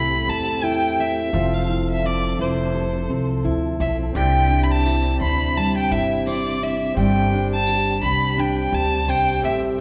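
A bowed solo violin leads this heartfelt, carefree acoustic pop passage, singing up front with a rich, smooth tone and even vibrato over a fingerpicked jumbo steel-string guitar, a dark upright bass and a softly placed concert grand piano. The tempo is an easy 85 BPM in 4/4 with a light swing on the sixteenths, and the harmony moves through Am7 and Fmaj7 before opening onto Cadd9 at 4.2 seconds and settling on Gsus4. The pizzicato bass sounds woody and thumpy on gut strings. The piano sits in the background, intimate and polished with deep bass, long sustain and audible action noise. A mellow, round tonewheel organ holds sustained chords behind them, lightly overdriven, with third-harmonic percussion, chorus vibrato and a fast rotary speaker. A jingly, close and dry tambourine joins at 4.9 seconds, and the whole ensemble sits in the wet reverb of a church or concert hall, where a faint mains hum can be heard in this fragment of a longer piece.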